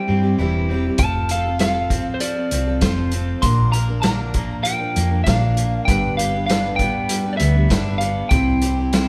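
A lightly driven, compressed lead guitar carries the melody over a picked steel-string acoustic guitar, a slightly broken-up electric guitar riff and a dark, round hollow-body bass, with a punchy, up-front vintage drum kit with a rolled-off top joining at 1.0 s, all sounding like a band playing live in a stone room, giving this nostalgic, jangly folk and heartland rock cut a warm glow.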